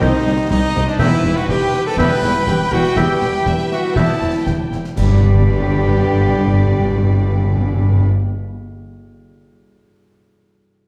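A mellow French horn section stands out in this triumphant, heroic excerpt of cinematic adventure scoring in G major, holding sustained chords at a striding 121 BPM in 4/4 over a dark, warm production on a reverberant scoring stage. A rich, lush violin section carries the melody from a distance, while a clear oboe, an airy flute ensemble, a vintage-toned clarinet and a second, focused violin section weave supporting lines in the background. Beneath them, a very quiet viola section fills in accompaniment, a dark trombone section adds faint sustained chords, a ringing fingerpicked harp spins arpeggios, and a roomy trumpet punctuates with clear stabs. Cello and double bass sections anchor the low end with a full, bowed weight as the harmony moves from Cm to Em and resolves to G at 5.0 seconds. Snare, bass drum and dark-toned clash cymbals drive the opening until 5.3 seconds, briefly overlapping hard-mallet timpani on G, which enter at 5.0 seconds with an articulate, calf-headed thump.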